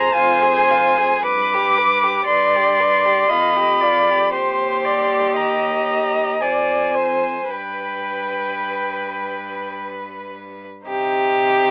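Classical slow romantic movement for string quartet in 3/4 at 52-59 BPM, elegiac and melancholic with a rubato feel, in which a single bowed first violin sings the melody from C5 to D6 with a smooth, warm vibrato up front, a clear, close second violin carries a second line, an even, up-front viola supplies accompaniment, and a focused cello holds the bass quietly beneath, the harmony moving from Fm through G7/F and Dm7b5/F to settle on Cm at 10.9 seconds, the mix heard through a telephone-like sound with moderate studio reverb in this fragment cut from a longer piece.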